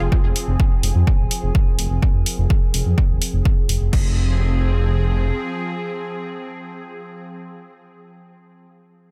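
Set in a digital ambience, this short cut from a longer melodic techno track in F minor moves at 126 BPM in a straight 4/4, with a dramatic, hypnotic mood built on an F minor chord. An up-front, punchy, layered electronic kick, re-recorded in a small room, drives the groove alongside an overdriven analog drum machine supplying crash cymbal and hi-hat from a large room. A deep, rumbling detuned saw bass with a beating, mellow edge sits prominently in the low end under a filter sweep, pumping with the sidechain. An evolving, morphing wavetable pad holds bright sustained chords through ensemble chorus and reverb, while a warbling, nostalgic, lo-fi tape-like pad lingers darkly in the background with chorus and reverb, and an ambient pad is swept and fades during the opening 3.9 seconds. Both drum parts drop out at 4.0 seconds and the bass at 5.3 seconds, leaving the two pads alone for the rest of the second section until about 7.3 seconds.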